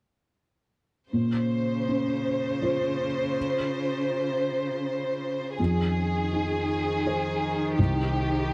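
Neoclassical piano and strings in a reflective, longing mood at 81 BPM in a rubato 3/4, where a felt-muted upright piano with audible action noise sits up front beside a rich, vibrato-laden chamber violin section carrying the melody, a single distant cello adds an expressive second line with portamento, and from 2.6 seconds a very quiet, cloudy granular pad with its own reverb drifts behind them over Bbmadd9, Fm7 and Cm chords in a dry, close 1970s-style studio sound, cut from a longer piece.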